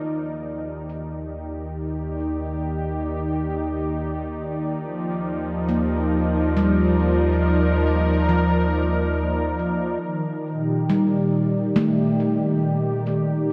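Luminous and weightless, this ambient passage in 3/4 floats on a straight feel and is cut from a longer piece. A detuned, warbling analog pad sits up front with sustained chords, its smooth, vintage blend of sawtooth and triangle softened by lush chorus and a long release as the harmony moves from Ebmaj7 to Bb/Eb and back to Ebmaj7. A handpan plays ringing, meditative arpeggios with soft fingertips on nitrided steel, its airy, mellow tone trailed by tape echo. Beneath them a round, deep analog bass holds a single low note, mixing square and sine waves with a filter pluck. All three parts fade in over the first 10 seconds, after which the bass drops away and the pad and handpan carry on to 13.5 seconds, the whole mix bathed in a huge, wet reverb with an 8.6-second decay.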